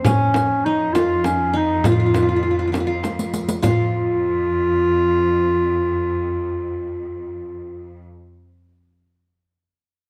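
Hypnotic and longing, this short cut from a longer Arabic maqam ensemble piece moves at 67 BPM in a straight 6/8, with a mellow, roomy classical-style clarinet carrying the solo melody up front over a bright-edged qanun plucked with fingerpicks on a second line and a lush, bowed cello section holding an intense, vibrato-rich F2 drone, while a clay-shell darbuka, a compressed, saturated frame drum and a jingling riq drive the opening until a drum fill at 3.0 seconds, after which the percussion stops at 3.9 seconds, the ensemble captured by close, detailed microphones with light reverb.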